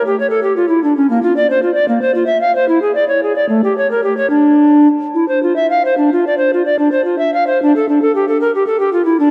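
Solemn and grave, this short passage, cut from a longer piece, is a baroque-style classical fantasia for unaccompanied bass recorder in D minor. It moves in 12/8 at roughly 71-78 BPM counted in dotted quarters, with a free, rubato feel. The bass recorder plays alone from 0.0 to 9.3 seconds, ranging from A3 up to F5, with a woody, airy, mellow tone, vibrato and tongued notes that carry a chiff at their starts. It sits up front, while a long church reverb of about 3.0 seconds trails behind it in a dark production. A new section begins at 7.6 seconds and carries the line through to the cut.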